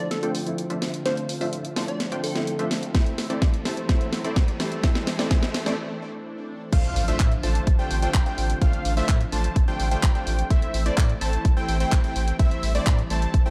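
A straight 4/4 pulse drives this euphoric, powerful festival progressive house excerpt. A catchy plucky unison lead, a soft felt-muted upright piano with audible action noise, a warbling lush unison pad, a filter-swept supersaw stab, a deep saturated sub bass and a house drum kit with a cracking snare open the build. A punchy electronic kick and a very quiet riser, swell and impact enter at 2.9 s, leading into a drop at 6.7 s where a bold unison lead with vintage 12-bit grit takes up arpeggios, pumping with the sidechain like the pad, stab and bass, all in a dark production with light reverb.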